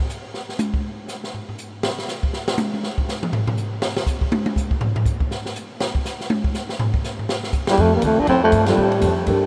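Small-group swing-and-bop jazz at a brisk 242 BPM with a playful, swinging feel opens with an up-front acoustic drum solo of dark cymbals, high-tuned snare and boomy kick, before a mellow, punchy trombone carrying the melody with light vibrato and tape echo enters alongside a subtoned baritone saxophone second line at 7.7 seconds, followed by a woody, thumpy pizzicato upright bass landing on F9 and a dark grand piano with subtle chorus adding a band accent at 8.7 seconds, all set in a dreamy mix soaked in huge ambient reverb.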